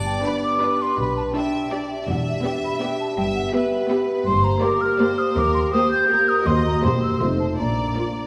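A mellow, hollow flute and a smooth chamber violin section open together on a second line above dark, distant French horn chords and bowed cello and double bass, with a lush viola section joining at 0.2 s and a very quiet, focused violin melody at 0.3 s, as this playful, whimsical and mischievous film cue in triple time moves from G through minor colours to a closing Bb, set in wet scoring-stage reverb and heard from further back in the room.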